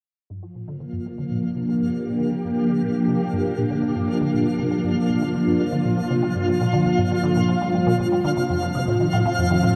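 A swirling, vintage string machine with phaser and ensemble chorus holds sustained chords up front under a filter sweep, while a squelchy, resonant blip pluck riff with delay and a twinkling granular FM texture both fade in beneath it, lending this expansive, mysterious fragment of sequencer-driven ambient space music a vast cathedral reverb and a cassette tape sound as it moves from Gm7 to F7 at 8.4 seconds.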